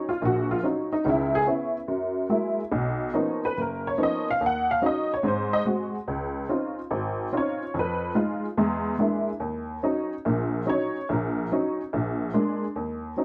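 Swung eighths at 144 BPM in 4/4 drive this cool, moody solo jazz passage in Eb minor, cut from a longer piece, where a detuned, jangly honky-tonk upright piano with a woody, vintage character sits up front on its own for about 13 seconds, ranging from F#1 to Gb5 through colourful harmonies such as Bmaj9#11 and E7#11, set in the moderate reverb of a stone room captured live.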